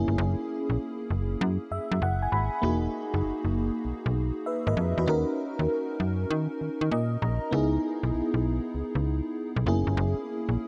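Swung sixteenths at 98 BPM give this bouncy, confident new jack swing R&B excerpt its strut, carried by a snappy, metallic slap-like FM bass with a digital edge up front. A lush, dreamy FM electric piano with a soft pad layer, touched with chorus and a noise layer, moves through F#9, Emaj9#11, D#m7 and C#m9, adding brief fills at 1.4 s and 6.6 s. Both parts are soaked in a huge ambient reverb with a 5.2-second tail, giving the whole mix a hazy, floating glow.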